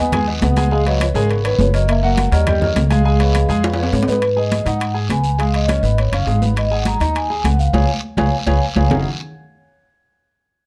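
A mellow, soft-mallet vibraphone melody bathed in plate reverb opens this sunny, danceable Afro-Cuban jazz excerpt at 205 BPM in F# major, joined from the start by a breathy, distant trombone second line that stops at 3.9 seconds, clear baby grand piano accompaniment and a woody, dark pizzicato upright bass up front, while ringing congas in the background, metal-shell timbales and a raspy guiro fill out the percussion, with a drum fill and band accent arriving at 7.7 seconds.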